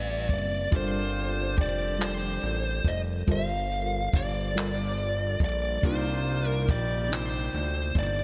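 A dark, overdriven lead guitar sits up front in this sultry, yearning slow R&B excerpt in six-eight, its picked melody trailed by delay over a dreamy FM electric piano layered with a soft pad that shimmers with chorus and tremolo. A fat, detuned analog sawtooth bass with a plucky filter anchors the low end, while a compact, dry cocktail kit enters at 0.3 seconds with a punchy kick, hi-hat and handclaps, and a smooth horn section with light vibrato adds stabs from 0.7 seconds. The harmony moves through lush minor eleventh chords, settling on Cm11 at 5.8 seconds, all bathed in a bright 1980s-style digital production with a lush hall reverb.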